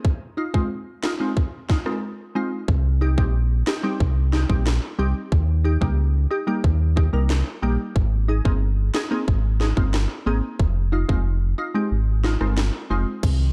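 A dark, up-front dancehall excerpt in F minor at 91 BPM with a tough, bouncy feel, where a tight-kicked, sharp-snared electronic drum kit carries crash, hi-hat and rim clicks, a glassy, crystalline wavetable pluck with chorus and sidechain pumping accompanies from 0.4 seconds, a deep sine sub bass with octave enters at 2.7 seconds under Cm, Eb, Abadd9 and Fm7, the kick drops out from 11.9 seconds, and an ethereal, airy pad with ensemble chorus and reverb surfaces only at 13.4 seconds.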